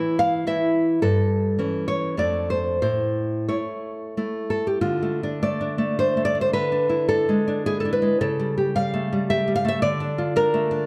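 Passionate and melancholic, this romantic piece for solo classical guitar moves in a lilting three-beat metre with a flexible, rubato feel. A single fingerpicked nylon-string guitar carries everything, sitting up front and spanning from F2 to F5 with a warm, acoustic tone. The opening phrase hovers around A-major and A7 harmonies, touching D minor before returning to A, and a second passage begins at 4.8 seconds, drifting through E7 and A7 colourings back to D minor at 9.8 seconds. A moderate recital-hall reverb surrounds the instrument, and the overall production leans dark. The clip is cut from a longer piece and runs just under 11 seconds.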